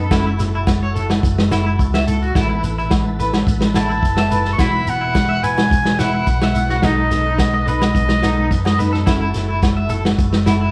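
A straight 4/4 groove at 107 BPM drives this sunny, danceable highlife guitar band excerpt, where a punchy, muffled vintage drum kit, a round fingered bass, ringing agogo bells and a grainy shekere support a twangy, slightly broken-up electric guitar playing arpeggios with tremolo, a bright clean guitar in the background, and a full tonewheel organ holding sustained chords through slow rotary speaker and chorus vibrato, before a warm, jazzy clarinet takes an up-front solo melody from 3.8 to 8.8 seconds over chords moving from F#m7 through Asus2, Esus2 and B7, the band heard playing live together in a moderate large studio reverb.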